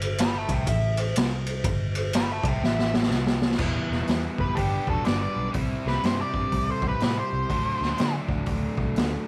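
An up-front octave-fuzz lead guitar, distorted and treated with slapback echo, carries the melody from 4.4 s in this smoky, brooding slice of swung blues rock and southern rock, cut from a longer piece. Before it, a smooth overdriven lead guitar solos from the start, capped by a drum fill at 2.6 s, and a dark, double-tracked, compressed rhythm guitar riff enters at 3.6 s over chords moving from Em through G and C to D. Underneath, a round, foam-muted picked bass and a raw garage drum kit with a boomy kick, medium-tuned snare and a gritty, saturated, rolled-off top sit in a small room with light reverb.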